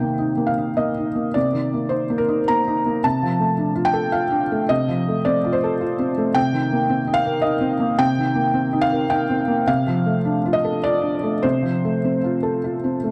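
In a rubato 3/4 that drifts between 97 and 111 BPM, this reflective, melancholic passage of neoclassical minimalist piano sits in C dorian and cycles through Cm7, Dm7/C and F/C across its 13.1 seconds. A felt-muted upright piano plays alone from C3 to Bb5, its soft, mellow tone placed up front and intimate, with an analog delay trailing its notes. Close, detailed microphones catch the instrument inside a moderate recital-hall reverb, and the passage is cut from a longer piece.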